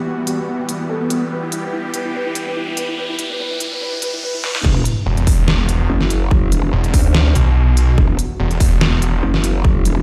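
Aggressive, heavy wobble dubstep in E minor at 144 BPM with a swung half-time feel, cut from a longer piece, opens on a muted, boxy felt-muted upright piano melody with digital delay over a lush, detuned supersaw pad pumping under a low-pass filter while a riser builds from 1.0 seconds alongside crisp hats and a deep snare from the dubstep drum kit, then at 4.6 seconds the drop lands with a sub drop impact, a punchy, tape-warm electronic kick, a wobbling, saturated growl bass with chorus and overdrive, and from 5.1 seconds a snarling, resonant distorted saw bass up front, all ringing through a stone-room reverb as if played on a big sound system in a bare room.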